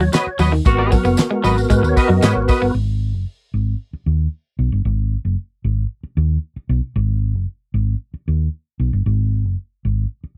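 Funk in G# minor at 114 BPM, this cool, driving excerpt opens with a burst where the full band plays together for under three seconds. A percussive tonewheel organ, fat and up front with key click, light overdrive, chorus vibrato and a slow rotary speaker, takes a solo over stabs while the band hits an accent from 0.7 seconds on a G#m7 chord. Beside it, a bright, clean picked electric guitar with ensemble chorus plays accompaniment, and a twangy guitar at the edge of break-up works a low riff. A damped 70s kit with a fat snare, tight kick, hi-hat and handclaps drives the groove, with a jingly tambourine in the background and a brief raspy, gritty tenor saxophone note as a second line. After 2.8 seconds only the dark, round hollow-body bass remains, playing alone over a G#5 until the end at 10.3 seconds. The sound is dry and close, in the manner of a 1970s studio.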